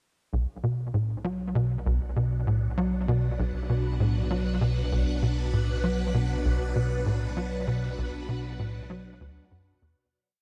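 Light reverb frames this short piece of ambient, sequencer-driven space music, which feels hypnotic and mysterious at 98 BPM in 4/4 and rests on B minor throughout. The tight sequencer bass sits up front from the start with a punchy, nasal riff of sawtooth and square waves shaped by a filter pluck. Its repeating five-step loop drifts against the bar, colored by ensemble chorus and tape echo. Beneath it, a round sine sub bass holds the root, B1, with deep, steady weight. A phased string machine enters at 1.1 seconds with swirling, vintage sustained chords, bright and slowly shifting under ensemble chorus and phaser, sitting further back in the mix as it fades in. The recording fades out from 6.9 seconds to its close at 10.1 seconds.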